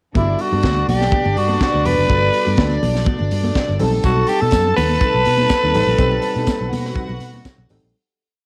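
At 0.1 s a glamorous, danceable disco piece starts at 123 BPM in a straight 4/4, running as a pre-chorus from 0.2 s. A tight funk drum kit lays down a four-on-the-floor beat with open hats on the off-beats, a high-tuned snare and a tight kick. A punchy fingered electric bass plays a syncopated line with chromatic approach notes, while very quiet hard-hand congas add a syncopated groove. Up front, a raspy, growling tenor saxophone plays a motif-based solo melody of call phrases with vibrato. Behind it, an earthy studio string section plays long, smooth high lines, and a worn, slightly out-of-tune, lightly overdriven tine electric piano pushes drop2 chords in the background. A dark, choppy sixteenth-note electric guitar sits very low in the mix. The harmony moves from Gmaj9 to B7b9b13, and a jingly tambourine joins on the backbeat at 4.0 s. The piece has a home cassette recording sound with spring reverb and a small room, and cassette tape colours the strings, electric piano, drums and saxophone. 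The piece fades out from 6.0 s.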